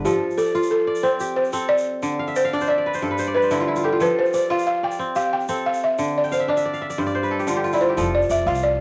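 A buzzing, woody balafon melody on soft rubber mallets opens this joyful, flowing West African string and xylophone excerpt in F lydian at 121 BPM in 12/8, its tone carrying a cassette tape colour, beside a crisp, ringing, fingerpicked kora playing arpeggios up front with fills from 2.2 to 4.0 seconds and again from 6.2, while a grainy, distant egg shaker sits far back and a dark, thumpy pizzicato upright bass on gut strings sounds at the start and returns at 8.0 seconds, all within a home cassette recording with light reverb.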